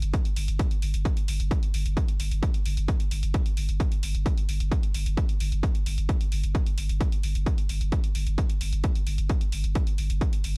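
An overdriven, heavy electronic kick drum sits up front in this dark, intense peak-time techno excerpt alongside a deep, round sine sub bass that pumps against it through a low-pass filter and a layered, overdriven electronic hi-hat, all set in a dark, warm digital ambience.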